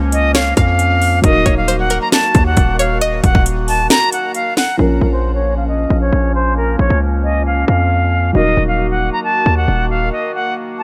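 Dark and melancholic, this half-time trap cut from a longer piece sits at 135 BPM in Bb minor, with a reedy, vibrato-laden concert flute carrying the melody up front over a hard-hitting 808 bass, a mellow grand piano in the background and a vintage-toned woodwind section holding sustained chords. A twangy, chorused resonator pluck adds a second line until 3.4 s, while an overdriven trap kit with a hard-clipped kick, sharp snare and metallic hats drives the opening before dropping out at 4.7 s. A filter sweep then shapes the second half, and the bass falls away for a brief break at 10.1 s, all set in studio reverb.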